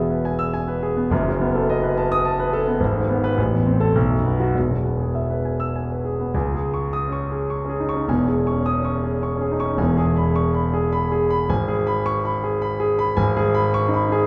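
Classical virtuoso piano study, brilliant and sparkling, in which a solo concert grand with a warm, deep bass plays at 105 BPM in a rubato 3/4, spanning E1 to E6 as it moves from E major into C# minor at 6.3 s, set in a wet recital hall reverb heard from further back in the room, in this short passage cut from a longer piece.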